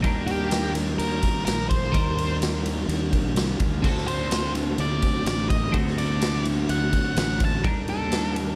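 Dark and trippy, this short psychedelic rock excerpt in a straight 4/4 sets a bright, twangy phased twelve-string guitar riff over a round, fuzzed bass and a punchy, gritty garage drum kit pumping in a stone room, while a distorted octave-fuzz lead guitar with analog delay carries the melody from 0.3 seconds and a very quiet, mellow string-machine cello pad adds sustained chords from 3.8 seconds as the harmony moves from Ebmaj7 to D7 and back.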